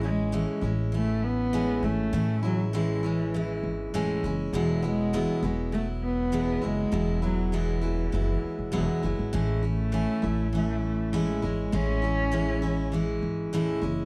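Heartfelt and sunny, this short pop excerpt moves at 100 BPM in a straight 4/4 feel, set in A major. A single bowed cello carries the melody with vibrato and a dusky, woody tone, and it drops out at 12.9 seconds while the other parts carry on. Beneath it, a picked jumbo steel-string acoustic guitar sits up front with a bright, full-bodied sound. An upright bass, also up front, is plucked pizzicato and has a dark, low voice. The harmony moves from Amaj7 to Eadd9 at 4.5 seconds and returns to Amaj7 at 9.3 seconds, all within a light reverb and a dark, warm production.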